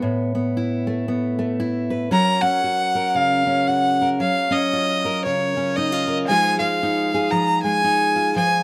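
A gently swung 4/4 at 115 BPM sets a pastoral, hopeful mood in this acoustic folk excerpt for a small group. A fingerpicked steel-string acoustic guitar with an auditorium-sized body plays accompaniment from the start, moving from Asus2 to Gbmaj7 at 2.1 seconds, where a warm, bowed solo fiddle enters up front with the melody, smooth and even, with light vibrato and a silky top. Close, detailed microphones and light reverb keep both instruments intimate, and a rootless Dbadd9/F arrives at 6.3 seconds before the fragment cuts off.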